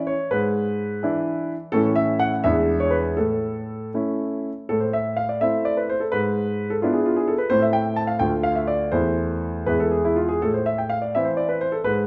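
Swaying in 6/8 with a flexible, rubato pulse of 78-87 BPM counted in dotted quarters, this classical-period piano sonatina passage opens cheerful and graceful in A major before turning to A minor at 4.7 s. A solo concert grand carries the whole passage, sitting up front with a smooth, vintage tone and a deep bass, and it moves through simple harmonies built around E7 and A, then Am, Dm and E. A wet recital hall reverb surrounds the piano, and the passage is cut from a longer piece.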